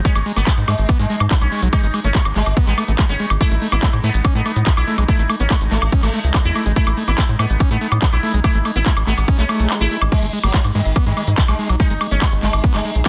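A dense, heavily limited and dry mix opens this 13-second cut of hypnotic, intense psychedelic trance in G# phrygian at 143 BPM, where an overdriven, heavy kick sits up front with a techno kit of crash, handclaps, smooth hi-hats and woodblock, under a tight, punchy sawtooth sequencer bass and a squelchy, gritty acid bass riff that pumps through distortion and digital delay. A bright, buzzing sitar carries the melody with shimmering sympathetic strings, phaser, delay and pumping, while a very quiet drone of moving overtones and chorus holds sustained chords shifting from G#5 to A5 at 3.4 seconds. An electronic swell sounds in the background at 9.4 seconds, the kick drops out briefly from 9.7 seconds, and the G#5 chord returns at 10.1 seconds.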